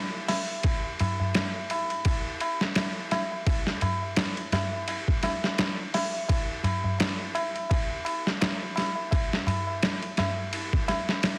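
Trip hop at 85 BPM in 4/4, this brooding, melancholic excerpt from a longer piece moves with a swing on the sixteenths. A high-tuned, ringing acoustic tabla, recorded close, opens at 0.1 seconds. A sampler-style drum kit joins at 0.3 seconds with hi-hat, kick drum, ride cymbal and snare drum, and both parts carry on to the end at 11.4 seconds. Sitting up front in the mix, the kit sounds pitched down, muffled and tape-toned, as if re-recorded in a small room, with a thumpy kick and a medium-tuned snare. The whole recording has a heavily compressed, radio-like quality, touched by light reverb.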